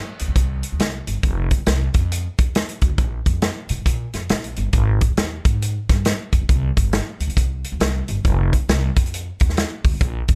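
Upright bass and a natural-sounding acoustic drum kit start together at 0.2 seconds in this short excerpt of uptempo 1960s-style soul, carrying an urgent, passionate mood in 4/4 with swung eighth notes. The pizzicato bass has gut strings and a woody, dark, thumpy tone, and it sits up front while moving through its low register. The drums, made up of hi-hat, kick and snare, sound punchy in the kick, with a medium-tuned snare, and they are also placed up front in a studio room. The drums sit a little louder than the bass. There is little reverb, so the pair sounds close and immediate until the recording ends at 10.3 seconds.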